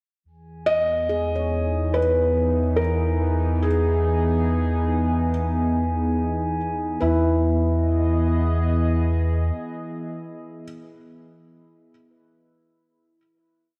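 A soft, felt-muted upright piano carries an intimate motif of arching phrases up front, its action noise audible and its notes trailed by tape echo, in this serene ambient piece at 71 BPM in E major. Beneath it sit a deep, round sine sub bass holding the root and a nostalgic, detuned tape-like pad drifting through slowly shifting chords with chorus, while a ringing stainless-steel handpan scatters bright notes in the background with its own tape echo. A glassy, ethereal glass harmonica fades in from 0.2 s on a held high note until 7.0 s, a very quiet vintage analog drone resonates underneath, and a wet concert hall reverb envelops the piece as it settles onto a final chord from 7.0 s.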